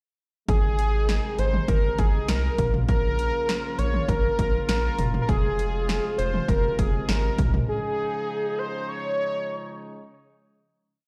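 Heard through a big sound system in a bare stone room, this short, complete synth-pop verse at 100 BPM in Db major feels upbeat and nostalgic, pairing a punchy analog drum-machine beat with syncopated toms and a rubbery, hollow square bass pulsing in eighth notes, which drop out at 7.7 s and 7.6 s, while a thick, bright detuned sawtooth unison lead with vibrato and digital delay carries a motif-based melody over a distant, roomy brass ensemble holding sustained chords through Ab, Bbm, Fm and Dbadd9 until 10.1 s.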